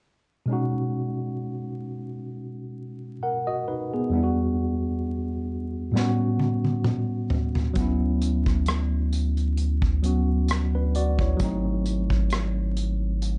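A worn, slightly out-of-tune tine electric piano with light overdrive opens this soulful, smooth neo-soul R&B excerpt at a slow 66 BPM with a gentle sixteenth-note swing, moving through lush chords from B6 through Em9 to A13 before an acoustic drum kit played with bundle sticks enters with a fill at 6.0 seconds, followed at 7.8 seconds by a rubbery, hollow square-wave bass with a resonant filter pluck, all set in a wet small room under a dusty layer of vinyl crackle.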